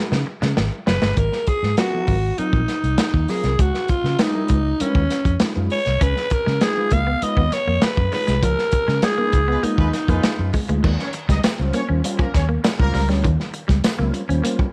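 A growling, breathy alto saxophone carries the jazz-style melody up front from 0.9 to 10.5 seconds in this playful, gritty funk excerpt at 99 BPM, over a crunchy, saturated breakbeat drum kit that opens with a fill, a round, punchy muted bass, a dark, clean electric guitar with analog chorus, a bright, twangy guitar riff at the edge of break-up sitting in the background with spring reverb, a distant, roomy horn section entering at 9.5 seconds, and a very quiet, jingly tambourine near the end, all in a small room with light reverb.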